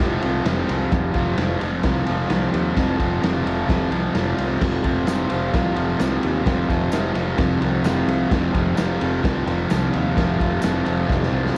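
A double-tracked fuzz guitar riff on an F5 chord opens this rowdy, swaggering garage rock excerpt at 130 BPM. It is driven by a punchy, gritty drum kit with dark cymbals and a growly, bright picked bass, all with the lo-fi grain of a home cassette recording and light reverb. A jingly tambourine sits in the background from 5.1 to 10.7 seconds, and a drum fill follows at 11.1 seconds.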